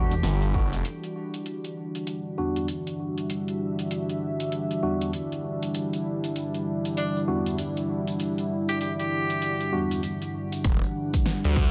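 Swaggering and gritty, this glitch hop excerpt in E minor moves at 98 BPM with a swung sixteenth feel, opening on an Em9 chord as a smooth, warbling analog pad with chorus and sidechain pumping, a clean tine electric piano stabbing through 12-bit sampler grit and digital delay, a fat-snared pop drum kit with metallic hats, and a grainy, bright tube shaker set the groove. A deep, moody ambient pad with a sub octave enters at 1.9 s, and a clear tenor saxophone with light vibrato and scooped notes sounds briefly at the start before returning at 7.0 s to play a jazz-style solo line through digital delay. A drop at 10.6 s brings back the punchy, up-front electronic kick and the thick, swirling phased detuned saw bass under a moderate plate reverb.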